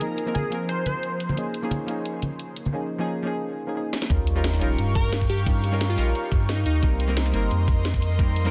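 Liquid drum and bass at 176 BPM in 4/4, this excerpt from a longer piece feels uplifting and lush, moving through F7sus4, Db69, Eb9 and Cm7. A deep, mellow chord stab with chorus and tape echo carries the harmony throughout, over an airy, breathy pad whose slow attack, long release, chorus, phaser and sidechain pumping give it a softly breathing quality. A plucky, detuned unison lead with digital delay and a filter sweep states a catchy melody, first from the opening to 1.3 seconds and again from 5.0 seconds. The drum kit's cracking snare, hi-hat and shaker run the whole way with studio reverb, joined early by congas played with soft hands. After a drum fill at 3.9 seconds, the drop lands at 4.1 seconds, bringing in a knocking electronic kick, a round, up-front sine sub bass and a background sub drop impact. The dense, heavily limited modern master keeps the sound dry and close.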